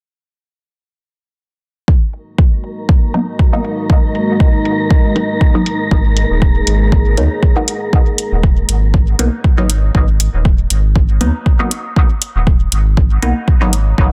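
A dense, heavily limited mix with light reverb opens this cavernous, hazy dub techno excerpt in G# minor at 119 BPM, its 16ths swung. A deep, tape-warm kick sits up front from 1.9 seconds, with metallic, low-passed hi-hats following at 2.1 seconds. They are joined by a dark, detuned analog pad with chorus, a breathy wind-like noise texture carrying its own built-in reverb, and muted sawtooth chord stabs run through phaser and dub echo. All three pump with sidechain while filter sweeps move over the drums and stabs. A round sine sub bass arrives at 5.9 seconds. When the pad falls away at 9.9 seconds and the texture just after, the harmony settles from G#7 to G# minor, leaving drums, stabs and bass to carry the groove.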